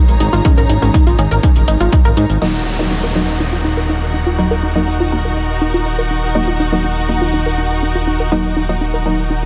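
A fat, detuned analog bass sits up front with sidechain pumping in this hypnotic, melancholic melodic techno cut at 122 BPM in Eb minor, under a tight, driving sequenced synth arpeggio and muted, deep dub chord stabs, both treated with chorus and dub echo. A punchy electronic kick and a drum kit with metallic hats and crash cymbal drive the opening until the kit drops out at 2.5 seconds, just as the harmony moves from Absus4 to Ebm and an electronic downlifter sweeps through. A lush, clear string section holds sustained chords above a very quiet, tense bowed-like drone, all in light reverb.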